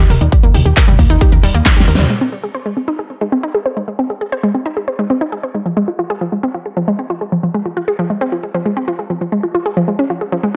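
Uplifting and soaring, this uplifting trance passage in Ab major at 135 BPM, cut from a longer piece, opens on Eb with the lush, detuned sawtooth unison pluck spinning sidechain-pumped, delay-trailed arpeggios over a punchy, round FM bass. A layered dance kit enters just after with a huge snare, handclaps, toms and crash, its hats, snare, toms and cymbals darkened by low-pass filtering, and an up-front electronic kick follows at 0.3 seconds. The kick drops out at 1.7 seconds as a drum fill leads to a band accent at 2.0 seconds. Once the bass stops at 2.1 seconds and the kit falls away, the pluck carries its arpeggios alone over Ab, Fm and a rootless Db. The dark production sits in light reverb.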